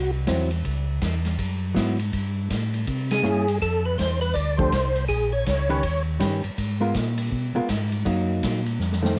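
Bluesy and late-night, this short soul jazz organ trio clip swings, with a mellow, round tonewheel organ bass line running throughout under slow rotary speaker, chorus vibrato and a touch of tube saturation, while a hollow-body jazz guitar comps in a dark, clean, fingered tone. A percussive tonewheel organ with third harmonic percussion states the melody from 3.1 seconds, landing on a band accent, over a big-room acoustic drum kit of hi-hat, ride, punchy kick and medium-tuned snare that carries a cassette tape grit. The drums close with a fill at 8.8 seconds, all of it captured dry in a homespun cassette recording over jazzy chords.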